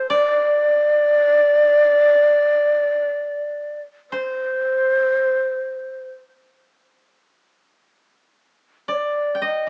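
In a free, rubato 4/4, this austere and calm fragment of Japanese traditional chamber music sets an up-front, breathy bamboo shakuhachi carrying the melody with a straight tone, chiffy crisp attacks and rolled-off highs alongside a quieter, dry, woody koto that plucks a second line with fingerpicks, both sounding throughout the 9.7 seconds in light reverb through the warbling pitch drift of a worn old cassette heard on a small speaker.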